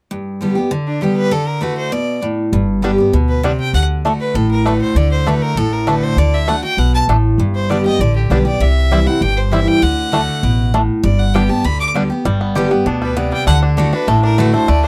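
Joyful and virtuosic, this bluegrass excerpt races along at 197 BPM in a straight 4/4, rooted in G major and cut from a longer piece. A bright, full-bodied picked steel-string acoustic guitar opens at 0.1 seconds, and a clear, biting fiddle with light vibrato and an airy bow carries the melody from 0.9 seconds, sounding earthy and close. At 2.5 seconds the upright bass arrives, woody, dark and thumpy, sitting up front, and the twangy, percussive bluegrass banjo, played with fingerpicks, joins the melody moments later. The harmony moves among G, D and C, with the guitar, bass and banjo all placed prominently in a dry, close studio sound with a 1970s character and light reverb.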